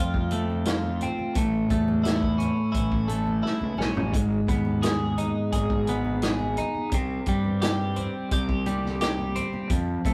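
Trippy and dark, this psychedelic rock excerpt moves at an unhurried straight pace, led by a bright, clean twelve-string electric guitar riff, picked and compressed, shimmering through a phaser and sitting up front over chords moving from F to A, G#m and C5. A fuzzy, overdriven fingered bass adds a punchy low end, while a vintage acoustic drum kit with a punchy kick and rolled-off top plays from 0.1 seconds, with a drum fill at 3.4 seconds. Very quiet, distant, low-tuned congas with a thick-skinned tone enter at 0.3 seconds, all captured in a rough rehearsal-room recording with moderate stone-room reverb.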